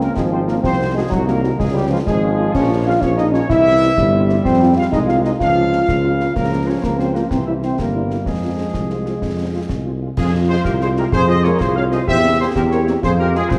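A straight 6/8 pulse at 126 dotted-quarter beats per minute drives this stern, martial military-style march for wind band in F minor, cut from a longer piece. A shadowy trumpet section carries the melody with a soft attack from a distant, roomy position, while a solo euphonium with light vibrato sings a second line and an up-front, mellow tuba anchors the bass. A clear trombone section holds sustained chords in the background, and a very quiet French horn section with a vintage tinge fills in the accompaniment. Concert snare drum, concert bass drum and clash cymbals with dark-toned cymbals play throughout, with a live-room sound. At 10.2 s the opening section repeats, and an airy, close-miked flute ensemble with vibrato joins on a second line before the harmony moves through C7/E at 12.1 s to F minor at 13.0 s, all set in a lush concert hall reverb with a 1.9-second decay and a warm production.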